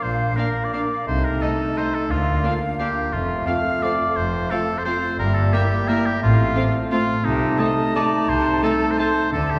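A sweeping, bittersweet orchestral ballroom waltz in 3/4 with an uneven, rubato sway, this excerpt places distant con sordino violins on the melody and a very quiet second violin line, veiled violas and a soft-attack bassoon in the accompaniment, muted cellos and double basses on the bass, a distant French horn section holding dark sustained chords, and woodwind lines from an up-front clear oboe, an airy silver flute and a roomy clarinet, set in a resonant church acoustic.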